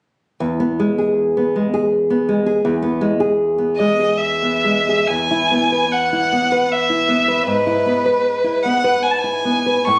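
Romantic duo for violin and classical guitar in a rubato 3/4, tender and serene, where fingerpicked nylon-string guitar with fresh strings opens alone at 0.4 seconds before a close, smooth violin with vibrato takes the melody from 3.8 seconds, both up front in light reverb.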